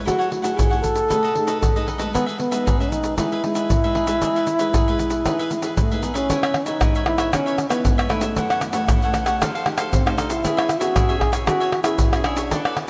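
Bright, crisp picked cavaquinho and a small, thumb-plucked nylon-string guitar dressed in lush chorus open this lively, joyful samba and choro passage, cut from a longer piece. A dark, breathy trombone carries the jazz-style solo melody with light vibrato and delay, close-miked over hard-handed tube shaker, pandeiro, tamborim and deep surdo that sit close, dry and up front. The harmony moves to a minor-key section at 6.3 s, all set in a dreamy mix soaked in huge ambient reverb.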